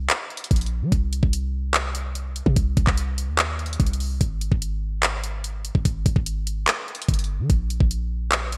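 A deep, boomy 808-style bass opens this brooding, hard-hitting trap excerpt at 146 BPM in a half-time 4/4 feel, its sine tone carrying a noise layer with a fast attack and a mellow decay across a range from G1 to G3. An up-front electronic drum kit joins at 0.1 seconds with a knocking kick, bright hi-hats and handclaps, all with a tape-warm edge. Light reverb and digital ambience frame the bright 1980s-style digital production through to the cut at 8.6 seconds.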